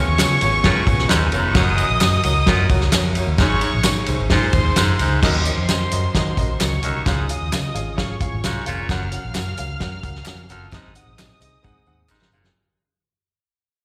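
Uptempo 1960s-style soul in a straight four, this uplifting clip is cut from a longer piece and sounds like a live gig heard through the venue's PA, wrapped in small-room ambience and recital-hall reverb. A raspy, gritty baritone saxophone drives a low, forceful riff, while a soft-attack string section plays a bowed second line with light vibrato, and a dark, woody upright piano fills in the accompaniment; these three parts carry a slapback echo. Underneath, a foam-muted fingered electric bass sits round and punchy up front, joined by a soul drum kit with a fat snare, tight kick and dark cymbals. Group handclaps and tambourine tick along in the background, close and dry. The music begins fading out at 5.2 seconds as the chords move through Ebm7, Db, Gb and Ab, and the drums close the clip with a fill at 11.6 seconds.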